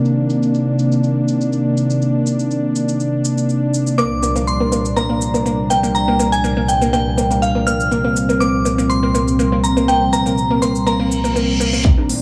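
Bathed in moderate room reverb, this expansive, dreamy progressive house passage at 122 BPM opens on a smooth, detuned analog pad pumping with sidechain over Cm9 and then Gm7/C, while crisp, low-pass-filtered shaker and hi-hats tick beneath a downlifter; at 4.0 seconds a crystalline FM synth bell melody with dub echo arrives alongside round, gritty 12-bit analog pluck arpeggios, a reverse cymbal builds from 11.1 seconds, and at 11.8 seconds a punchy kick and tape-warm background bongos and congas land under a rising riser.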